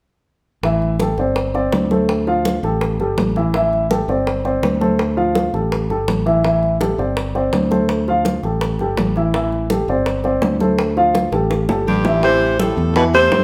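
A dark, woody upright piano comps up front in this driving, sophisticated stretch of Afro-Cuban jazz, playing in a straight four over a looping minor progression that moves between Am7, Gsus4 and Dm7. Beneath it, a fingered electric bass sits up front, direct and amped with a warm tone, while tight, high-tuned bongos played with hard hands sound near, and thick-skinned, saturated congas pulse further back. A drum fill at 11.3 s sets up the entrance of two saxophones at 11.9 s: a clear alto carries the melody up front with vibrato, subtone and scooped notes, and a breathy baritone adds a second line beneath it with light vibrato. The band sounds like it is playing live together in one large studio with a moderate amount of reverb. The passage is cut from a longer piece and moves into a new section at 12.2 s before it breaks off.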